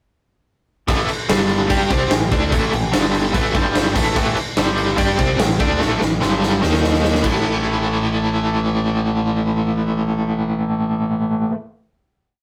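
This rough rehearsal-room recording carries a moderate studio reverb that gives the short hard rock piece a raw, roomy edge. At 146 BPM in a straight 4/4 and A minor, the mood is driving and aggressive from the first second. A biting, double-tracked guitar sits up front with a picked power-chord riff colored by tremolo, moving mostly between A and G chords before a brief turn to D#5. A growling fingered electric bass, overdriven and punchy, drives eighth notes that double the guitar riff. A big rock drum kit in a bright stone room adds a punchy kick, a medium-tuned snare and crash cymbal, and plays a fill from 5.8 seconds before dropping out at 7.3 seconds. The guitar and bass then strike a final hit at 7.4 seconds and ring out until 11.5 seconds.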